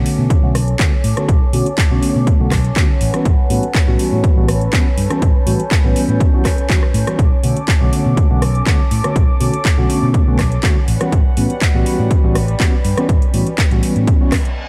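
A dry, filtered mix carries this short cut from a funky, nostalgic disco house track at 122 BPM in straight 4/4, with a filter sweep running across its full 14.7 seconds. A punchy, overdriven electronic kick sits up front beside an overdriven house kit of handclaps, rim clicks and metallic, pumping hi-hats. An amped fingered electric bass, a mellow tine electric piano with phaser, and a soft, floating sul tasto violin section pump through low-pass filters over Bm9 and A13 chords, and a reverse cymbal enters at 14.2 seconds.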